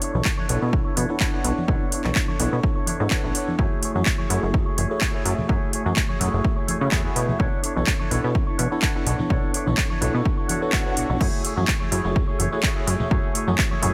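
Groovy and funky, this filtered disco house excerpt at 126 BPM in F# minor rides a filter sweep across its 13.9 seconds, with a punchy overdriven electronic kick and a house kit of metallic hats, handclaps and crash cymbal up front, a plucky sawtooth-and-pulse analog bass pumping with sidechain, a worn, slightly out-of-tune barky tine electric piano with phaser voicing Bm11 and F#m9 chords, a dark enveloped-filtered guitar riff, congas and tambourine tucked in the background, and a brief electronic swell at 10.4 seconds, all in light reverb.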